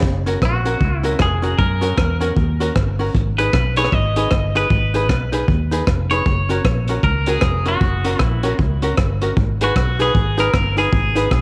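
A twangy, bright electric guitar carries the melody through spring reverb and tape echo in this driving, mischievous ska excerpt at 154 BPM with a swung feel, riding over a crunchy, gritty breakbeat kit of hi-hat, tight kick and rim click, a round, punchy foam-muted vintage bass, and a dark, hollow-body archtop guitar comping on F# and G#m chords in a small, lightly reverberant room.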